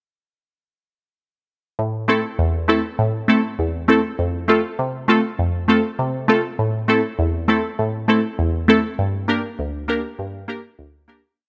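This dancehall piece moves at a steady 100 BPM in straight 4/4, with a sultry, hypnotic mood rooted in A phrygian. A single wavetable chord stab carries the whole track alone, entering at 1.8 seconds and playing off-beat chords in close voicing through one verse. Its sound is crisp and detuned, with a fast-attack filter pluck that decays and sits bright and up front. The chords cycle from Am to F, back to Am and then to Gm, spanning from D2 up to Bb4. Light reverb and digital ambience frame the stab within a dark production, and the piece fades out from 9.0 seconds until the stab stops at 11.2 seconds.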